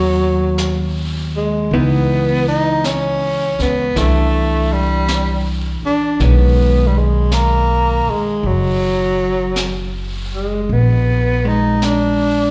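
Intimate and melancholic, this swung jazz ballad excerpt, heard live through a venue's PA in a reverberant recital hall, sets a breathy, up-front tenor saxophone melody with vibrato and a soft attack over dark, compressed hollow-body guitar chords tucked in the background and a woody, thumpy pizzicato upright bass, while a brush drum kit with a high-tuned snare and hi-hat enters at 0.6 s, with slapback echo on the saxophone, guitar and drums.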